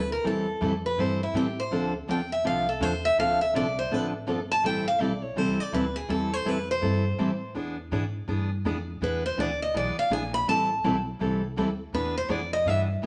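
An acoustic string swing piece in the gypsy-jazz manner opens with a picked steel-string guitar carrying the melody, joined at once by upright bass and, at 0.2 seconds, a second picked steel-string guitar in accompaniment. The tempo is a brisk 164 BPM in 4/4 with a swung eighth-note feel, and the mood is virtuosic and swinging in A minor, with the chords moving from Am7 through Dm7 to a tense E7#9. The lead guitar sounds bright and boxy, with a parlour character and fresh strings, sitting up front as it takes a solo across the whole passage, ranging from E4 to B5. The accompanying guitar is also up front, bright with fresh strings, concert-size body and audible finger squeak, while the pizzicato upright bass on gut strings gives a woody, dark, thumpy foundation lower in the mix. A generous large-studio reverb surrounds the ensemble, and the passage is a section cut from a longer piece, with the melody guitar stopping at 12.8 seconds.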